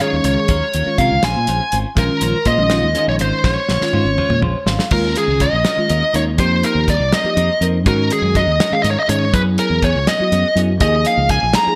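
Electric jazz fusion in 6/8 at 81 BPM in Bb minor, this nocturnal, driving excerpt sets a distorted, bluesy lead guitar up front over a bell-like tine electric piano with phaser, a compressed clean guitar with subtle chorus playing stabs in the background, and a punchy fingered bass, all beneath a bright 1980s-style digital sheen. A damped 70s drum kit with dark cymbals, a tight kick and gated reverb plays a fill from 3.4 seconds, joined by an electric piano fill at 4.2 seconds. At 4.9 seconds the harmony moves from the minor ninth chords of the opening into a string of suspended ninth chords.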